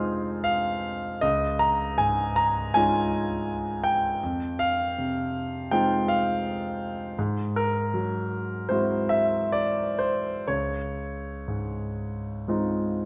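Impressionist classical solo piano in Db major, hazy and dreamy, drifting in a rubato 4/4 between 59 and 84 BPM. A clear, natural concert grand sits up front with deep bass from Db2 to F6 through a moderate scoring-stage reverb, moving from Fm7 and Dbadd9 through an Abaug7 to settle on Dbmaj9 at 10.5 seconds in this brief passage cut from a longer piece.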